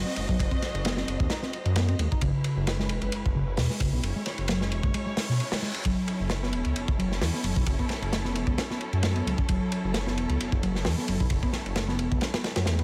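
A dark symphonic string section opens this raw, swaggering breakbeat excerpt, holding lush, bowed chords with vibrato and a smooth top, colored by vintage 12-bit sampler grit and sidechain pumping. A deep, rumbling detuned saw bass and a hollow-body short-scale picked electric bass sound together with the strings from the very start, the saw bass sitting up front while the overdriven picked bass plays a round, punchy riff roughened by its own sampler grit. From 0.1 seconds a crunchy breakbeat kit drives the groove at 132 BPM in 4/4 with a light 16th-note swing, its punchy kick, medium-tuned snare, hi-hat and dark ride cymbal sounding saturated and gritty with a rolled-off top. The harmony moves from a rootless G#7/F# to C#m7 at 2.2 seconds and F#m7 at 5.8 seconds, in F# minor pentatonic. A faint electronic reverse cymbal sounds in the background between 5.4 and 5.8 seconds. The mix is dry, with little reverb.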